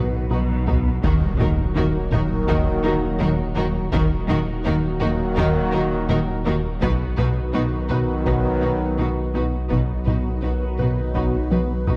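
A deep, saturated sub bass anchors this vast, brooding hybrid orchestral and electronic film cue, joined by a fat analog bass riff and bowed cellos and double basses beneath mellow French horns, bright trombones and a swirling, phased analog pad holding sustained chords. Lush violins carry an expressive, vibrato-rich melody and second line in the background, while violas with portamento and a juicy, squelchy blip pluck playing arpeggios enter at 0.3 seconds alongside a close, dry taiko ensemble that adds fills. A background electronic impact hits at 1.0 seconds, all set in a dark, moderately reverberant scoring-stage sound.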